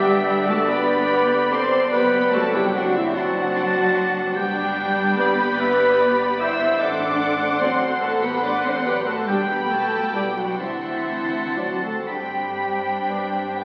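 A lush, vibrato-rich violin section carries the lyrical melody of this serene classical excerpt in G major, unfolding in a slow, rubato 6/8 with the dotted quarter around 38-50 BPM. Around it, a clear oboe, a dark clarinet, a pure metal flute and a second, focused violin section entering at 0.3 s weave secondary lines. A soft bassoon and a distant viola section accompany, mellow French horns and shadowy trombones hold sustained chords, and a clear trumpet adds background stabs on D5. Expressive cellos and double basses anchor the bass. The whole sits in a reverberant concert hall and carries the crackle of a very old 78 rpm record.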